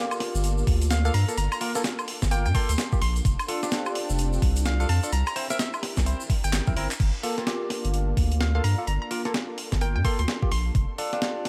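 UK garage in a skippy two-step style, this late-night excerpt rides 128 BPM with a 62% swing on the sixteenths, set in G dorian and moving through Gm9, F6 and C7. A deep, saturated sine sub bass sits up front, joined from 0.7 seconds by a knocking, overdriven electronic kick, while a gritty, tape-toned breakbeat kit supplies handclaps, hi-hat, a medium-tuned snare, woodblock and crash. A grainy tube shaker sounds distant in a large room and drops out at 7.0 seconds, as a drum fill closes the opening drop. Barky tine electric piano stabs, played through a combo amp with phaser and digital delay, punctuate the chords. A hollow, detuned square-wave pluck carries the bouncy melody with chorus and delay, as a silky vintage string machine pads sustained chords in the background, treated with phaser, ensemble chorus and sidechain pumping. Digital ambience wraps the mix in a spacious sheen.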